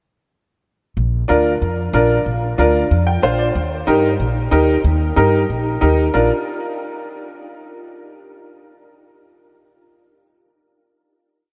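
This is a short, complete cumbia piece in Bb major, danceable and joyful, moving at a brisk 185 BPM in a straight 4/4. An acoustic upright bass sets the groove at 1.0 seconds with a thumpy, pizzicato cumbia figure on steel strings, sitting up front in the low register. A clear upright piano joins at 1.3 seconds with rhythmic triad chords, its worn, slightly detuned, woody tone adding a homely charm, and it slips in a short fill around 2.9 seconds. The harmony moves simply from Bb to Eb and back before the piece settles on a final Bb chord at 6.1 seconds. The whole mix is soaked in a huge, dreamy ambient reverb that lets every note hang in the air long after it sounds.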